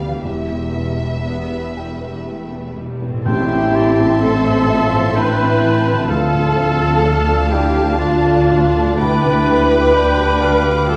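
Violins carry a lush, vibrato-rich melody over violas, dark cellos and double basses, a felt-muted upright piano with audible action noise, mellow distant French horns and a very quiet ringing harp, while bright cymbals and tam-tam rise softly from 0.3 seconds in this moving, bittersweet cinematic film score in a rubato 3/4. At 3.3 seconds a hollow, airy flute group, a clear oboe and a very quiet clarinet add second lines, and hard-mallet timpani strike a brief accent with the whole ensemble. Everything sits in a reverberant recital hall, colored by the warble and pitch drift of worn old cassette tape.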